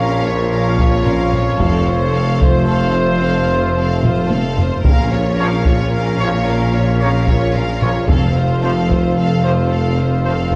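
Cinematic, epic orchestral film score in a relentless, dark 12/8 at 74 BPM in Bb harmonic minor, where a vibrato-rich studio violin section carries the melody over a clear second violin line, lush violas, smooth cellos, focused double basses and a warm tuba anchoring the bass. A dark woodwind section, very quiet distant French horns and a bright but hushed trombone section hold sustained chords, and tight trumpet stabs cut through as the harmony moves between Bbm and F. Heavy-sticked taiko drums enter at 0.8 s and break into a fill at 4.0 s, after which soft, round timpani join at 4.8 s, all within the reverberant, warm sound of a scoring stage in this excerpt from a longer piece.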